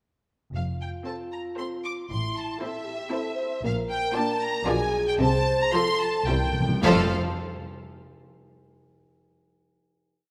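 This is a quick, cheerful classical-period movement for symphony orchestra in F major, moving in a spirited 3/4 at about 108-118 BPM. Up front, the first violins carry the melody with a lush, expressive vibrato and a warm, slightly distant tone. Mellow French horns hold smooth, tight sustained chords beneath them. Dark, woody cellos form the bass line in both bowed and pizzicato playing, while smooth, even bowed double basses double it. At 1.1 s, the second violins and violas join with a rich sound, softened by the violas' gentle attack, adding a second line and accompaniment that moves between pizzicato and sustained chords. The harmony passes from F through A minor, B-flat and a diminished chord to a C7, and at 6.3 s timpani with hard mallets and calf heads add an articulate fill. The movement closes on a final F chord at 6.8 s, heard through the bloom of a concert hall.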